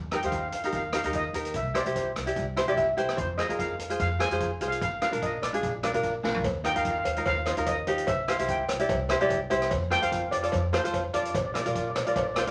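A woody, thumpy pizzicato upright bass opens this sunny, bouncy calypso excerpt in Eb major at 147 BPM, quickly joined by a light, fingerpicked tenor ukulele sitting up front, a small-room street-band drum kit with a boomy kick and rolled-off top, and a shimmering lead steel pan struck with hard rubber sticks. The sixteenths carry a gentle swing, the ukulele adds a brief fill early on, and a drum fill at 6.2 s ushers in a compressed, saturated cowbell at 6.4 s. A wet studio reverb gives the whole a short tail.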